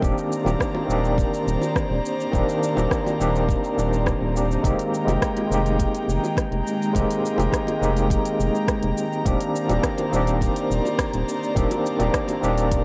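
An overdriven tine electric piano sits up front, its gritty tone shimmering with fast tremolo and a digital delay as it plays accompaniment chords moving from Cm9/Eb to Fm11 and back. Alongside it, an airy, breathy pad holds sustained chords with slow attacks and long releases, softened further by chorus. A round analog bass stays low and mellow, anchoring the harmony with sustained notes, while an electronic kick gives a deep pulse. A deep house kit adds smooth hats, rim clicks and shaker, and very quiet low-tuned bongos enter at 0.5 seconds and fall away at 12.4 seconds. The sunset chillout mood is wistful, and the whole mix carries light reverb and the worn, warbling pitch drift of old cassette tape, in an excerpt cut from a longer piece.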